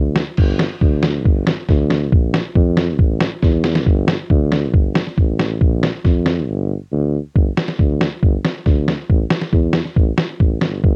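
A mellow tuba carries this short klezmer passage, its vibrato-laden tone punchy yet smooth on top, played up front in a soloing, pop-leaning style as it spans the low register from G1 to F2. Beneath it, a lo-fi sampler-style drum kit enters at 0.2 seconds with a thumpy kick, a medium-tuned snare and a crash cymbal, its compressed, muffled sound colored by cassette tape. The mood is bittersweet and soulful, set in a straight two-beat metre, with the tuning sitting slightly below standard pitch. A drum fill lands at 3.4 seconds, and a break arrives at 6.5 seconds before a new section opens at 7.4 seconds. Recorded at home on cassette with little reverb, the piece has a close, dry, intimate feel, cut from a longer performance.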